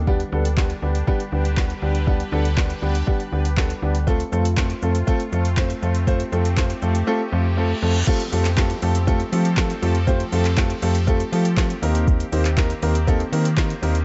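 Confident yet bittersweet, this dance-pop excerpt moves at 120 BPM in a straight 4/4, its chords shifting from G/D to F, then to Fadd9 and Eb6. A slap-like FM bass with a snappy, digital attack sits up front beside a clear, open baby grand piano playing accompaniment, both pumping with sidechain. Behind them, a sweeping resonant pad holds sustained chords in the background, its detuned sawtooth tone airy and evolving, thickened by chorus and pumping along. A smooth R&B drum kit, electronic and produced, pairs a soft kick and woody snare with metallic hi-hats, handclaps, shaker and crash cymbal, sounding as if re-recorded in a small room. The music drops out into a silent break at 7.1 s, and a very quiet reverse cymbal and downlifter carry it into the second section at 8.1 s, lingering until 12.1 s. The mix is dark and dry, with little reverb.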